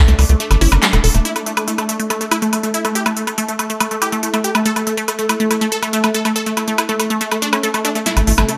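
Psychedelic trance at 141 BPM in a straight 4/4, this intense, trippy excerpt is cut from a longer piece and tuned slightly low, with an A5 chord at the start. A punchy, detuned supersaw stab carries the melody through a phaser and delay, while a lush unison pluck plays a riff colored by ring modulation, a noise layer and vintage 12-bit sampler grit. Behind them, a bright, resonant drone with moving overtones holds sustained chords in the background, treated with chorus and its own reverb. The tight, saturated sequencer bass sits up front but appears only from 0.1 to 1.2 seconds and again briefly near the end, and an overdriven big-room drum kit drives throughout with a punchy snare, crisp hats, handclaps and woodblock, sounding re-recorded in a large room. After a band accent at 0.8 seconds, a filter sweep runs across the synth arpeggio from 1.3 to 8.1 seconds, and the close brings a drum fill with a very quiet riser underneath, all set in light reverb.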